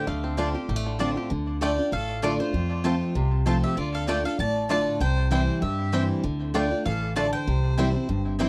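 A dry, close studio sound in the 1970s style, touched with light reverb, frames this short, driving bluegrass passage cut from a longer piece. It moves at 194 BPM in 4/4 with a swung eighth-note feel, in D minor, with a lonesome cast as the chords shift among Dm, F and C. Up front, a full-bodied dreadnought guitar with fresh strings carries the accompaniment, while a woody, growly pizzicato upright bass thumps beneath it from 0.1 seconds. A bright, picked mandolin plays the high melody alongside a twangy, fingerpicked banjo set in the background with tape echo, and a second mandolin adds stabs, also with tape echo, from 0.4 seconds. At 1.6 seconds a single bowed fiddle enters with a nasal, biting second line and light vibrato.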